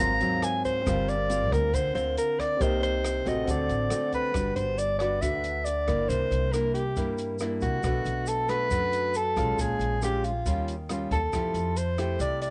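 A mellow soprano saxophone carries the melody up front with light vibrato and a distant, roomy jazz tone, floating over a sunny, relaxed bossa nova at 137 BPM in 4/4, cut from a longer piece. Fingerpicked nylon-string guitar with audible finger squeak and a woody pizzicato upright bass on steel strings support it throughout, while a polished grand piano with long sustain adds accompaniment only until 4.4 seconds, and a dark, smooth jazz kit with boomy kick, hi-hat and rim click joins a grainy tube shaker in the background from 0.2 seconds. Harmonies move through rich chords such as Ab13, Gmaj7, C9 and Fmaj9, and the home cassette recording, with its dulled top end and light small-room reverb, gives the whole a soft, intimate glow.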